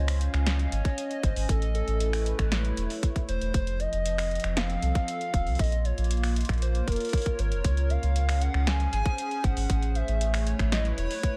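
A straight 4/4 groove at 117 BPM drives this intricate, glitchy IDM excerpt in Db major, with a tight, up-front electronic kick entering at 0.8 seconds beneath an analog drum machine of finger snaps, metallic hi-hats and a punchy snare set in a large room. A deep, round bass with tube saturation and a filter sweep anchors the low end, while a hollow, flute-like pad with chorus and ring modulation sustains chords moving through Dbmaj7, Amaj7, F7 and Bbm. Over the top, a warbling, nostalgic lead with vibrato, subtle chorus and tape echo carries the melody, all wrapped in a digital ambience.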